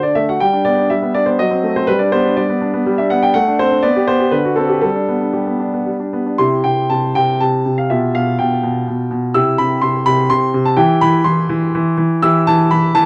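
In a flexible, rubato 3/4 at 123 BPM, this short cut from a classical-period piano sonatina moves with a playful, elegant lilt, opening in G major. A solo baby grand piano, warm, natural and up front, ranges from B2 to E6 through a light reverb in a dark, warm production. At 6.4 s the music turns to C major for its second phrase, leaning on a dominant-seventh G7/B before settling on C/E near 10.8 s.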